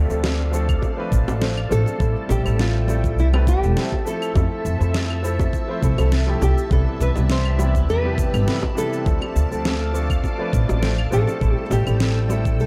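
A growly, woody pizzicato upright bass sits up front in this wistful, relaxed sunset chillout piece at 102 BPM in D dorian, cut from a longer track, with a light 16th-note swing under a fingerpicked nylon-string guitar melody, complete with finger squeak, and a polished grand piano accompaniment, both touched with digital delay. A silky string machine holds slow-attack chords through phaser and ensemble chorus, while a knocking electronic kick, a deep electronic snare with cabasa and claves, and tight, high-tuned bongos in the background keep time. A barely audible downlifter sounds through the first 2.0 seconds, and the dark production has a small-room feel as the chords move from Dm7 through Am7, Fmaj7 and Cmaj7.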